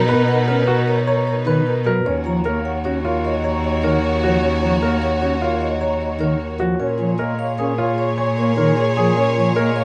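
Hypnotic and urgent, this short cut from a longer minimalist classical piece moves in a steady, straight 6/4 pulse. A metallic, ringing vibraphone carries the melody from the background, its fast motor vibrato shimmering, while a clear French horn with light vibrato sings a smooth second line, also set back in the mix. A chamber organ on its principal stop supplies a warm, smooth accompaniment with a touch of chiff, and a rich, even studio string section holds bowed sustained chords. Underneath, a single focused cello sits up front as the bass, and a warm grand piano, entering at 0.1 seconds, spins intimate arpeggios with short sustain and audible action noise. The harmony moves from Bmaj7 through D#m7 to A#m7, and the close, detailed, nearly dry sound keeps every part distinct.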